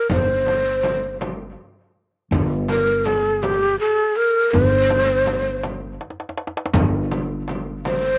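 Persian modal ensemble music in a festive, stately 6/8 at 54 BPM in dotted quarters, this short cut from a longer piece puts a breathy, mellow end-blown ney up front, its tongued, unsteady melody trembling with vibrato and trailed by a slapback echo, over a woody, growly pizzicato upright bass holding a low G, a tight, close tombak and a deep, distant frame drum struck with hard hands, with a drum fill from 6.0 to 6.7 seconds, all captured dry in the open air.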